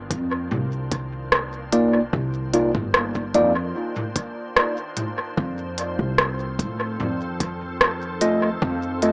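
A straight 4/4 pulse at 74 BPM opens this meditative, deep ambient dub excerpt: a muffled, pitched-down electronic kick, overdriven and compressed, thumps up front. Beside it, an organic electronic drum kit adds crisp hi-hats, rim clicks and toms, its tape-coloured, small-room character trailing dub echo. An upright bass, played pizzicato on gut strings, supplies a woody, dark low end. Underneath, a pure, sine-like organ pad fades in with a slow attack, holding calm sustained chords thickened by ensemble chorus and its own reverb. At 1.7 seconds a clean tine electric piano enters with stabs run through phaser and dub echo, while the harmony moves from Cm11 to F7 at 5.4 seconds in C dorian. The echo-heavy mix carries light reverb and a small-speaker sound.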